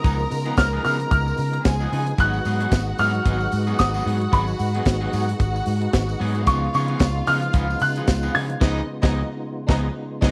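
A light reverb and small room ambience give this short disco cut a close, polished sound, and its mood is driving and glamorous with a gentle swing on the sixteenths. Up front, a tight funk drum kit with a dry, medium-tuned snare, tight kick and bright cymbals sits beside a dark, round, amped fingered electric bass. A clear baby grand piano with short sustain carries the melody until 9.4 seconds, while a lush, bowed symphonic violin section with smooth vibrato adds a second line. A twangy, slightly broken-up electric guitar fills in the accompaniment, and in the background a fat tonewheel organ holds sustained chords with key click, third harmonic percussion, light overdrive, chorus vibrato and a slow rotary speaker. A distant, jingly tambourine stops at 8.3 seconds, and the band hits an accent from 8.6 seconds to the end, over harmony moving between C#9 and G#m7.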